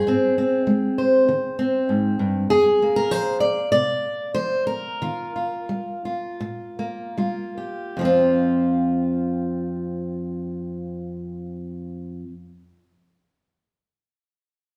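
A fingerpicked steel-string acoustic guitar plays alone, sitting up front in the mix with a warm concert tone and audible finger squeaks, in an intimate, haunting folk passage in F dorian and 4/4. Moving through Ab, Fm and Ebadd9 at 73-99 BPM, the tempo slows between 2.5 and 8.0 seconds before a new section settles on F5. A generous large-studio reverb with a live-room feel surrounds the guitar in this short cut from a longer piece.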